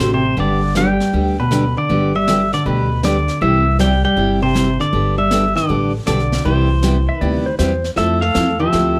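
A swung 4/4 at 158 BPM drives this down-home western swing excerpt in C major, where an up-front pedal steel guitar sings the melody with fingerpicks, slide and volume swells over a hollow-body archtop's second line, a picked dreadnought acoustic with audible finger squeak, a woody, thumpy pizzicato upright bass on gut strings, and airy brushed drums that join at 0.4 seconds, while a twangy lap steel slips in briefly at 7.1 seconds, all set in a moderate club reverb as the chords move from G through Cmaj7 to Fmaj7.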